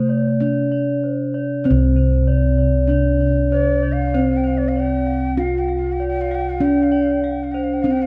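Over a straight four-beat pulse, this serene, shimmering stretch of Javanese gamelan puts a ringing bronze metallophone, struck with padded disc mallets for a soft, airy tone, on the main melody, while a second metallophone played with a wooden mallet adds boxy arpeggios higher up. Close-miked bossed gongs carry the bass, round, beating and full at the front, and a breathy bamboo bansuri with vibrato and a hollow, rolled-off sound traces a quieter second line above. All four parts sound throughout the 8.1-second passage, cut from a longer piece and set in a moderate recital hall reverb.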